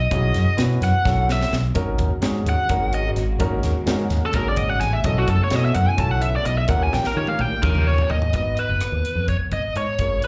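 Heard through a club PA with light reverb and a dulled top end, this funky, intense electric jazz fusion fragment in 7/8 opens on a biting, overdriven lead guitar solo with slapback echo that runs to 8.3 seconds, over a dark, round fingered bass up front, a warm grand piano carrying its own slapback, a crisp, punchy fusion drum kit with a high-tuned snare and a fill at 1.1 seconds, and a swirling vintage string machine, treated with phaser and ensemble chorus, that drifts in the background from 1.8 seconds.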